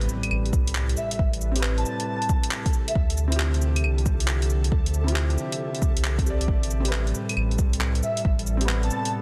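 A swung 136 BPM future garage groove in A minor, melancholic and nocturnal, is driven by an overdriven electronic kick and deep house kit of cabasa, claves, handclaps and hi-hat, while a round sine sub bass sits up front. A felt-muted upright piano with audible action noise and tape echo and a warbling, nostalgic pad move through Am9 and Dm11, as a faint grainy flickering texture holds a steady A4 in the background. A very quiet electronic impact opens the excerpt, and a breathy flute-like synth lead with vibrato and dub echo appears from 1.0 to 3.0 seconds and again at 8.0 seconds.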